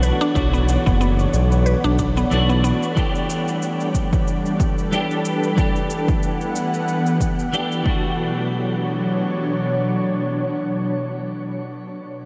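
Hypnotic organic downtempo in B minor at 92 BPM with a light 16th-note swing, where an airy, warbling pad sustains through Bm7, G6 and Em as a twangy clean electric guitar accompanies under a dreamy wash of huge shimmering reverb, while a woody mallet-like pluck arpeggiates in the background and a smooth gliding synth bass pumps for the first 2.7 seconds, and an overdriven, punchy electronic kick with a gritty cabasa drives the groove until about 8.0 seconds.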